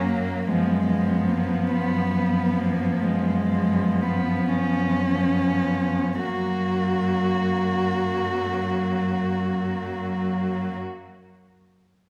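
In a 12/8 with a free, rubato feel, this serene classical fragment for cello ensemble slows during its opening six seconds before a second section begins at 6.2 seconds, where the harmony comes to rest. The lead cello carries the lyrical melody up front and intimate, its sul tasto tone airy and softly attacked with a light vibrato. Beneath it, a dark second cello sings an expressive inner line with vibrato and gliding portamento. A rich, smooth third cello holds an even accompaniment from a more distant position. The bass cello anchors everything with a close, warm tone, its vibrato and portamento adding expressive shading. All four bowed voices play throughout the excerpt, set in a generous scoring-stage reverb with a 1.6-second decay that gives the ensemble a soft, glowing halo.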